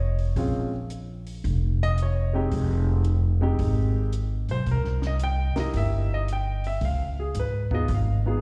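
Late-night and swinging, this short fragment of a longer jazz piano trio piece in F minor moves at 112 BPM in 4/4 with a swung eighth-note feel, as an intimate concert grand carries the melody with audible action noise, plate reverb and slapback echo over a woody, thumpy pizzicato upright bass on gut strings that sits up front as the loudest part, while a compact cocktail kit of hi-hat, punchy kick and high-tuned snare, dark with a rolled-off top, joins at 0.2 s and stops at 8.1 s, all heard like a live gig through the venue's PA with recital hall reverb across a Bbm7, Fm7, C7#9 and Db7 progression.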